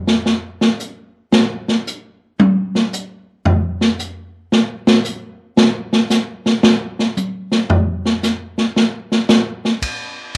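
A swinging big-band drum kit carries this joyful jazz fragment alone, playing from 0.1 to 10.4 seconds at 113 BPM in 4/4 with a swung eighth-note feel and soloing through about 9.8 seconds. Hi-hat, ride cymbal, toms, a medium-tuned snare and a punchy kick sit up front with a natural, acoustic studio-room character. The sound has a moderate booth ambience and the character of a home cassette recording, with lossy compression artefacts, and the clip is cut from a longer piece.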